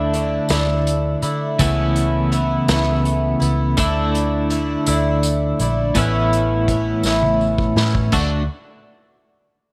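Hopeful folk rock and heartland rock in a slow 6/8 at 55 BPM, cut from a longer piece, where a shimmering, octave-doubled picked twelve-string acoustic guitar and a bright, compressed twelve-string electric guitar riff with tremolo sit up front over a dark, foam-muted fingered bass, an unplugged drum kit played with bundle sticks and a very quiet, jingly tambourine, moving through Dsus2 and Aadd9 chords in moderate plate reverb before a drum fill at 7.0 seconds leads to D at 8.1 seconds.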